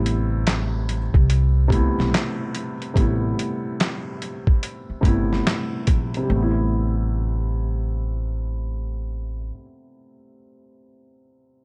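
A soft, felt-muted upright piano with audible action noise and a low-pass filter opens this melancholic, reflective, swung lo-fi hip hop fragment on an Am9 chord alongside a woody pizzicato upright bass, while a gritty, pitched-down boom bap sampler kit of thumpy kick, medium-tuned snare, hi-hat and handclaps sits up front in studio reverb until 6.3 seconds, after which the bass stops at 9.5 seconds and the mellow, intimate piano carries on alone to 11.6 seconds.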